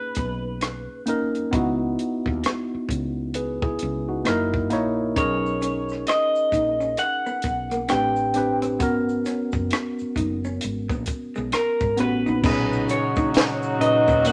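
A slightly broken-up, lo-fi electric guitar sings the melody over a worn, slightly out-of-tune tine electric piano, joined almost at once by a dry cocktail drum kit with dark cymbals and a high-tuned snare and a woody, round fretless bass, opening this smooth, sensual neo-soul R&B excerpt with a lazy swung groove; from about 5.2 seconds background egg shaker and finger snaps, and moments later a clean, picked hollow-body jazz guitar second line, fill in the texture, and at 12.4 seconds very quiet bowed strings bring soft sustained chords beneath mellow, octave-doubled horn stabs, all in light reverb.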